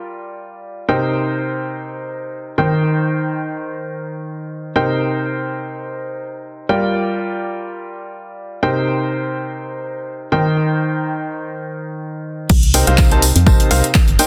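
A clear, up-front concert grand piano carries this soulful, energetic piano house riff on its own until 12.5 s, its short-sustained chords cycling through Gm7, Cm7 and Eb6 with sidechain pumping and delay. At 12.5 s the drop arrives: a hollow, dark, organ-like FM bass pumps underneath while a punchy electronic kick and an analog drum machine with crash, handclaps and hi-hat, both overdriven, sit over an airy acoustic fusion kit in the background, with a high-tuned snare, hi-hat and tambourine. Light small-room reverb and a dense, heavily limited master keep the sound tight, and the cut ends at 14.3 s.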